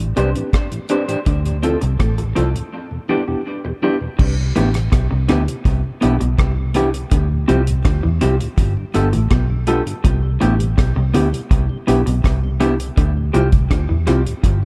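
Smooth and longing, this short excerpt of lovers rock reggae at 82 BPM rides a tight-kicked, rolled-off drum kit and a round, foam-muted fingered bass up front, while a worn, slightly out-of-tune tine electric piano, a slightly broken-up picked guitar riff, dark lo-fi guitar stabs with tape echo in the background and a very quiet tonewheel organ with key click and slow rotary speaker fill a dark, warm small room, moving from Am11 through a break at 2.7 seconds into a Cmaj7-based passage at 4.2 seconds.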